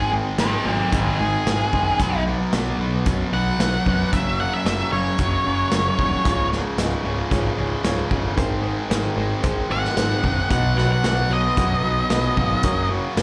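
A dark, fuzzy octave lead guitar opens this swaggering, confident classic rock clip at 113 BPM, playing its solo over a bright, double-tracked overdriven riff guitar and a punchy fuzz bass, all with slapback echo on the guitars, while an acoustic drum kit with a medium-tuned snare and rolled-off top joins at 0.4 seconds. A clear, woody upright piano slips in softly at 6.2 seconds with its own slapback echo, and the lead guitar pauses briefly before returning at 9.7 seconds. The whole cut sounds like a live gig heard through a club PA, with light reverb and a small room ambience.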